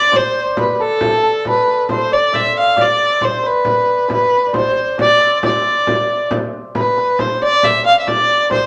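A moderate studio reverb frames this mysterious, driving medieval dance in D dorian, cut from a longer piece at 91 BPM in a straight 6/8, where a single dark, woody bowed fiddle with light vibrato leads up front from A4 to F5, a mellow, shimmering hammered dulcimer rings beneath it as a second line in the same range, and a small, bright frame drum struck with hard hands enters at 0.1 seconds, all three playing through to 8.7 seconds.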